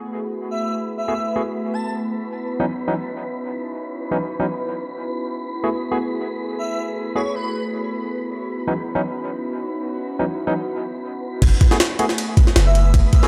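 A warbling, lo-fi tape pad with chorus and phaser opens this frenetic, atmospheric drum and bass excerpt, soon joined by a breathy, wind-like tuned noise texture, fleeting phrases from an airy, dreamy lead with dub echo, and bright, barky tine electric piano stabs from 1.1 seconds over F#m11 and C#m11 chords, until the drop at 11.4 seconds brings in an up-front, gritty, pitched-up jungle drum kit with a thumpy kick, high-tuned snare, ride and crash alongside a deep, sine-toned 808-style bass, set in a lush hall ambience with a dark production.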